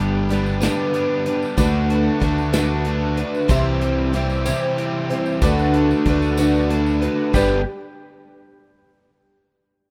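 Folk rock and heartland rock in a nostalgic, jangly 6/8 at 62 BPM in G major, moving through G, D6 and C over a rough home-demo mix with light studio reverb. A shimmering, octave-doubled twelve-string acoustic with lush chorus leads the accompaniment up front, joined by a round fingered bass, a crunchy double-tracked overdriven guitar riff, a woody upright piano, and a reedy tonewheel organ with key click and fast rotary sustaining chords. A punchy small-room country drum kit and a distant jingly tambourine come in at 0.3 s, and a twangy pedal steel enters on a single G at 7.3 s.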